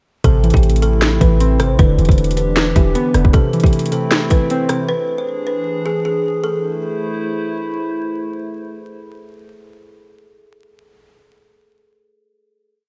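A dark, eerie trap beat opens at 0.2 seconds with everything arriving together: a hard-clipped kick, sharp snare, rim clicks and metallic hi-hats with fast rolls set up a half-time groove, while a deep, boomy 808-style bass sits up front with long sub notes that follow the kick and slide in pitch. Above it, a woody kalimba plucks a ringing, looping melody that repeats like a sampled phrase, and detuned, warbling lo-fi synth keys with chorus and a filter sweep play an eighth-note arpeggio pattern. A nostalgic, tape-like pad with chorus and built-in reverb holds slow-blooming chords underneath, moving through Am, Em7 and E7 before settling back on Am. The drums drop out at 4.8 seconds and the keys just after, leaving the kalimba and pad to carry the closing A minor chord from 6.4 seconds, with the pad ringing on alone until 9.4 seconds. Vinyl crackle and a dark, warm digital ambience wrap the short piece.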